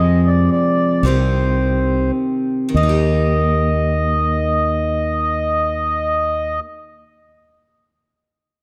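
A mellow, reedy accordion melody opens this hopeful, pastoral acoustic folk piece in 3/4 alongside a bright, freshly strung picked steel-string acoustic guitar and a round, dark fretless electric bass, all up front in light reverb, easing to a slower pace over the first 2.7 seconds as the chords move from Fm and Cm to Eb at 2.7 seconds in this fragment cut from a longer piece.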